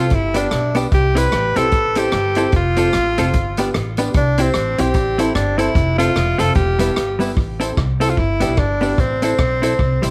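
A clear, forceful tenor saxophone with light vibrato and tape echo leads this mischievous, driving swung ska excerpt in A minor at 149 BPM, over clean, picked hollow-body jazz guitar, boxy, slightly detuned upright piano stabs in the background and woody, thumpy pizzicato upright bass, with a big-band drum kit of hi-hat, punchy kick and rim click, also touched by tape echo, joining at 0.1 seconds, a jingly tambourine entering at 0.4 seconds, and light studio reverb around it all.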